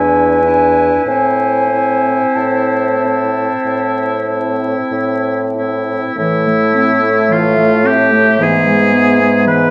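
A slow, rubato romantic movement for wind quintet in A minor opens on an E7 chord that settles onto A minor at 1.1 seconds. The concert flute carries a pure, straight-toned melody with a crisp attack, above the oboe's lightly vibrato second line. The clarinet, clear and close-miked, and the distant, roomy French horn fill in the accompaniment, while the bassoon, up front with vibrato, anchors the bass. The mood is melancholic and elegiac at 46-57 BPM, heard in a wet recital hall with a dark, warm production and vinyl crackle, and the passage, cut from a longer piece, reaches E/G# at 8.4 seconds.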